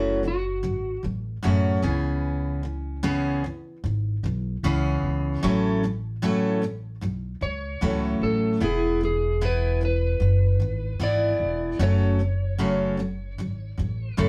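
A straight 4/4 pop groove with an easy-going, sunny mood sets a picked steel-string acoustic guitar, warm with audible finger squeak, over a woody, growly pizzicato upright bass, both up front throughout in moderate studio reverb, while an up-front electric slide guitar with a slightly broken-up tone carries the melody, heard briefly at the start and returning at 7.4 seconds in this passage cut from a longer piece.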